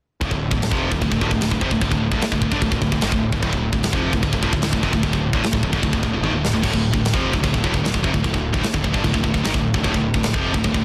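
Heavy metal in D minor at 150 BPM, this aggressive, heavy fragment from a longer piece runs on a straight 4/4 pulse and sits on a single D minor chord. Two high-gain guitars play picked, distorted riffs from D2 to F3 throughout, bright and set back in the mix. Beneath them a fuzz-laden, overdriven electric bass picks between D1 and G#1, punchy and direct-amped but also placed in the background. The acoustic drum kit sits up front with a tight kick, a medium-tuned snare, toms, and bright china and crash cymbals, and it plays a fill from 6.2 to 6.6 seconds. At 6.6 seconds a third, scooped and double-tracked guitar joins very quietly on the same riff range. The sound is dry, with little reverb, and the master is dense and heavily limited in a modern style.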